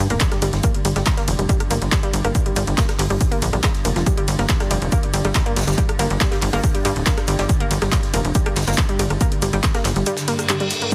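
A punchy, tape-warm electronic kick drives this dark, intense peak-time techno excerpt, joined by a tight, nasal sawtooth sequencer bass pumping under sidechain, an overdriven analog drum machine with handclaps, hi-hat, ride and rim click, a bright, detuned analog pluck riff coloured by chorus, tube saturation, cassette tape and digital delay, a swarming granular drone in the background, a very quiet, airy acoustic kit of hi-hat, shaker and snare, and a reverse cymbal rising in at 10.3 seconds, all set in light reverb with a heavily compressed radio sound.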